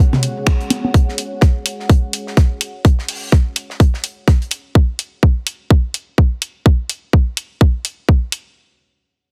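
A deep, detuned sawtooth pad with chorus and sidechain pumping fades out by 4.8 seconds over the dry hi-hat and fat snare of a dark, damped 70s drum kit sitting in the background, while a brief burst of analog electronic toms and congas with delay plays alongside an up-front garage kit of finger snaps and hi-hat and a tight, tape-warm electronic kick from 0.5 seconds, making a cool, sparse minimal techno cut at 126 BPM with a swung 16th feel and a heavily compressed, radio-like sound.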